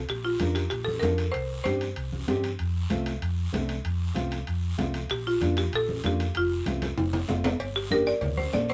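A joyful, sunny cumbia groove moves in a straight 4/4 feel, heard here as a short section cut from a longer piece. A round, hollow-bodied electric bass sits up front from the very start, while a buzzing marimba struck with hard mallets carries the melody with a woody, vintage, band-limited bite, dropping out after the opening phrase and returning at 5.1 seconds. A dark, thumb-plucked nylon-string guitar fills in the chords beneath, moving through Bb, Csus2 and F before settling on Gm as a new section begins at 7.6 seconds. The percussion blends a raspy guiro, close and dry metal-shelled timbales with cowbell, and low-tuned, saturated congas set back in the mix. A drum fill leads into that final section, and the band sounds like it is playing live together in one room with moderate studio reverb.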